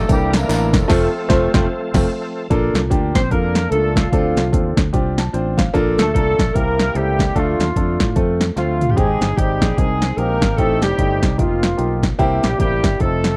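Swinging at 149 BPM in 4/4, this jubilant, soulful uptempo gospel excerpt in Bb major rides a punchy, tape-warm analog drum machine and a fingered electric bass, with a clear, woody upright piano up front adding a fill, a bright, shouting tonewheel organ with slow rotary speaker and light overdrive holding chords in the background until 2.5 seconds, tambourine and handclaps heard briefly at the start, a mellow, distant horn section carrying the melody in octaves, and a breathy, whispered alto saxophone joining on melody at 3.2 seconds, set in a dry, close 1970s-style studio sound with small room reverb.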